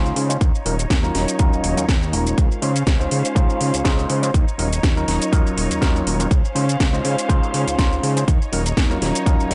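Filtered disco house at 122 BPM with a joyful, feel-good lift, built on a reedy, gritty overdriven electric piano with phaser, a lush bowed violin section holding sustained chords, and a fat detuned sawtooth bass, all three pumping against the punchy, up-front electronic kick that enters at 0.4 seconds, while a house kit of cracking snare, metallic hats and shaker rides the swung 16ths and a filter sweep runs through this short cut from a longer track as Ebm7 and Dbmaj7 alternate under light digital reverb.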